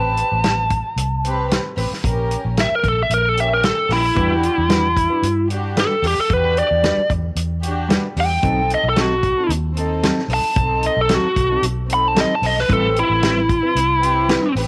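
A straight-eighth groove at 112 BPM in 4/4, with a light swing on the 16ths, carries this mournful, smoky soul blues in E minor, cut from a longer piece. A tight soul drum kit enters at 0.2 seconds, its medium-tuned snare mid-forward and its top rolled off, sitting up front beside a dark, foam-muted fingered electric bass that sounds round and punchy. Over them, a bright, overdriven lead guitar takes a picked solo from the very start and stands out as the loudest voice. A chamber string section holds sustained chords beneath it, bowed sul tasto with light vibrato for an intimate, close colour. From 4.1 seconds a clean, mellow electric guitar adds chorus-tinged stabs in the background, while the harmony moves from Am9 through A#dim7, Em9 and B7b9 and back to Am9, with light reverb and small-room ambience around the band.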